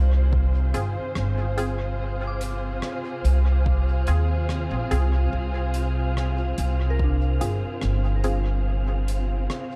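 A slow, straight 72 BPM pulse in 4/4 carries this meditative, hazy ambient dub cut on F minor, where a woody, pizzicato upright bass sits up front beneath veiled, con sordino string chords, a breathy wind-like noise texture, soft FM bell arpeggios with chorus and analog delay, and detuned, filter-plucked chord stabs soaked in cassette grit and dub echo, while an overdriven electronic kick sits in the background from 0.3 to 7.2 seconds and a soft-mallet kit adds echoing hi-hat and rim clicks in a dry, echo-heavy mix.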